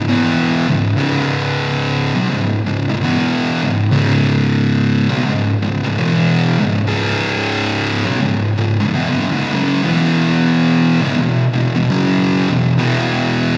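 A thick, double-tracked fuzz guitar plays alone and up front for the full 13.6 seconds, its distorted, picked lines moving between C#2 and F#3 over a C# minor chord with digital delay, in a heavy, hypnotic metal passage at 81 BPM with a swung eighth-note feel, cut from a longer piece and heard live through a venue's PA in a moderate club reverb.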